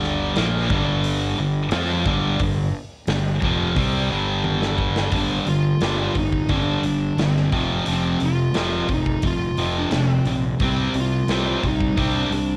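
This aggressive, driving hard rock excerpt opens with a bright, high-gain guitar riff up front, joined by a very quiet, sludgy overdriven guitar and carried by a growly, fuzzed fingered bass and a punchy acoustic kit of kick, snare, hi-hat and toms in a big room. A drum fill at 4.4 seconds leads into a new section, where a dark, smooth overdriven lead guitar enters at 5.2 seconds with a melody over the riff. The whole take has the gritty character of a home cassette recording with light reverb.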